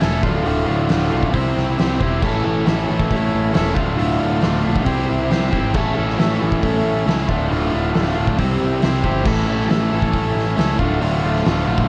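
A straight 4/4 pulse at 137 BPM drives this swaggering, raw garage rock clip, cut from a longer piece and lasting about 11.9 seconds in D minor. An oversized, low-tuned acoustic drum kit plays throughout with a fat snare, punchy kick, hi-hat and crash cymbal. It sounds dark and saturated in a bright stone room, roughened by vintage 12-bit sampler grit. Up front, a double-tracked, overdriven electric guitar plays a picked riff from D2 to C5 over a cycling Dm, C, A progression. Beneath it, a round, direct electric bass adds its own overdrive, sitting low between D1 and C#2. The whole band plays in a moderate club reverb, and the cassette tape sound keeps the top end dulled.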